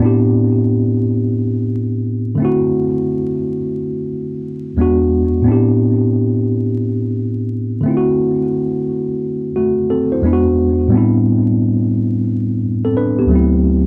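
A lone tine electric piano opens the fragment, worn and slightly out of tune yet clean and up front, set against a bed of vinyl crackle. The mood is melancholic and hazy, a slow hip hop groove in 4/4 with a swung sixteenth-note feel. The piano carries the whole piece by itself, spanning from D2 up to C5 as it cycles through Am11, D9 and E7 before returning to Am11. A wet small room reverb gives the sound a close, intimate space, while the crackle lends it a dusty character. The passage runs to 13.9 seconds and lands on D9, as though lifted from a longer piece.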